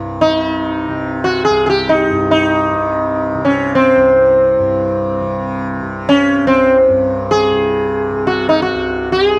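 Hindustani classical music in free time, this brief excerpt in raga Todi on C carries a solemn, longing mood. A softly plucked tanpura drone hums low and quietly beneath, its buzzing tone glimmering from the start, while the sitar enters at 0.2 seconds and sits up front with a round, plectrum-plucked voice whose sympathetic strings shimmer around each note. The close, dry studio sound has a 1970s character, touched by light reverb.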